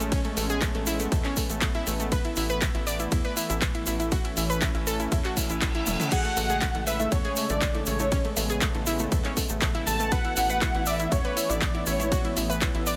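A straight 4/4 groove at 120 BPM drives this hopeful, expansive progressive house excerpt in A major, anchored by a punchy, tape-warm electronic kick that sits up front from 0.1 seconds, a layered house kit of handclaps, hi-hat, ride, crash and toms, and a grainy egg shaker in the background. Underneath, a tight sequencer bass built from sawtooth and square waves drives with a fast-attack filter pluck, while a smooth, detuned analog pad holds sustained chords that move between Amaj7 and Esus4/A. A round, warbling analog pluck spins bright arpeggios through chorus and digital delay, and the bass, pad and pluck all breathe with sidechain pumping. A reverse cymbal and a drum fill lead into 6.1 seconds, where a thick unison lead with a sub octave, vibrato and cassette-tape echo takes the melody, joined in the same range by an intimate chamber violin section bowing a second line sul tasto in the background. 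Bongos and congas join softly from 6.4 seconds, and a light reverb rounds out the mix.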